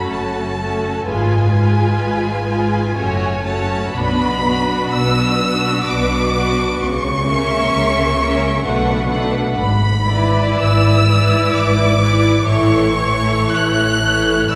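A slow, romantic classical movement for string orchestra, this excerpt moves in a tender 3/4 at 63 BPM, its beats uneven and pulled by rubato as the harmony drifts through minor and diminished colours before settling into A major at 9.6 s. The first violins carry the melody high and up front, their tone rich and expressive with vibrato and a soft attack. Beneath them, the second violins sing a smooth, even second line, while the violas fill in a lush, focused accompaniment that sits close. The cellos and double basses anchor the bass together from 0.1 s, both bowed with vibrato, the cellos warm and the basses rich. A wet concert-hall reverb with a 2.5-second decay surrounds the ensemble, lending the sound a spacious, glowing halo.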